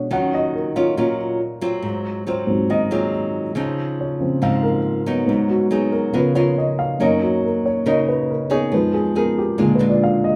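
A dark, mellow baby grand piano and a small, fingerpicked nylon-string guitar open together in this melancholic, intimate bossa nova at 139 BPM, with the piano taking a solo across the whole 10.4 seconds while the guitar accompanies. The piano sits up front with audible action noise and a short, natural sustain. Both instruments share a large studio's wet reverb as if playing live in one room, moving through jazz harmony from Ebm9 and Dbmaj9 to a closing Fm7b5 and Bb7 in this fragment of a longer piece.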